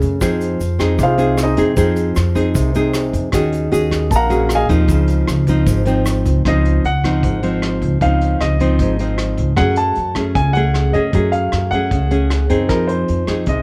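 This breezy, sophisticated bossa nova excerpt opens with fingerpicked nylon-string guitar, up front and classical in tone, alongside woody, thumpy pizzicato upright bass on gut strings, a muffled, lo-fi brush kit of hi-hat, tight kick and rim click, and a grainy tube shaker set in the background. A baby grand piano carries the melody, offering a brief phrase at 1.0 seconds before settling in from 4.1 seconds with an intimate, natural sound, its action noise audible and its notes lifted by plate reverb. The piano takes a solo turn through the opening section, and the shaker drops away at 6.5 seconds as the second section begins. The harmony moves through lush chords such as Fm7, Ebm11, Dbmaj9 and Gbmadd9 before returning to Fm7. The drums sit lower in the mix with a rolled-off top, while a light reverb gives the whole a gentle sense of space.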